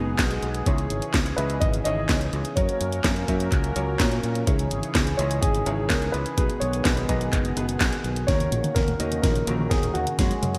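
Melodramatic and bittersweet, this italo disco excerpt moves at 126 BPM in a straight 4/4, set in C# dorian. A dark, mellow concert grand piano carries the melody through a delay, while a second, vintage-toned grand with deep bass plays stabs treated with analog chorus and delay. Beneath them, a warbling sawtooth-and-sine pad holds sustained chords with chorus, and a growly fingered electric bass adds delay to the low end. From 0.2 s, a gritty, thumpy overdriven kick drives the groove alongside a tape-toned house kit of handclaps, hi-hat and a cracking snare. At 8.3 s, a drum fill arrives as the harmony shifts from G#m, C#madd9, F# and G#m/B to D#m7, and a very quiet, detuned sawtooth pluck with ring modulation enters playing arpeggios. A lush hall reverb and bright 1980s-style digital production frame the whole piece.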